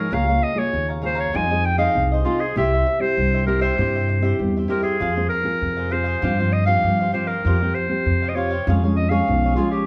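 A bright clarinet with a soft attack sings a bittersweet, yearning samba melody in a vintage classical style, over crisp, picked cavaquinho and full-bodied, thumb-plucked nylon-string guitar. A woody pizzicato upright bass sits up front beside the clarinet, while the group plays live together in one room, bathed in a wet, large studio reverb. This short passage is cut from a longer piece, and its chords pass through minor seventh and suspended harmonies.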